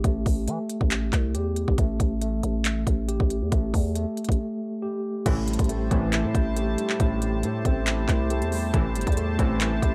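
Trap-leaning hip hop in A minor at 138 BPM with a half-time feel, this excerpt carries an eerie, menacing mood, opening on a mellow tine electric piano playing arpeggios through tape echo over a growling, buzzy 808-style bass and an up-front trap kit of hard-clipped kick, crisp hi-hats, handclaps and crash cymbal. After a break at 4.4 seconds, the second section at 5.3 seconds adds a felt-muted upright piano with audible action noise, a bright, evolving pad on sustained chords with chorus, and glossy, retro chorused polysynth stabs. The production is dark and warm, with light reverb and digital ambience, and the harmony moves between Am7 and A5.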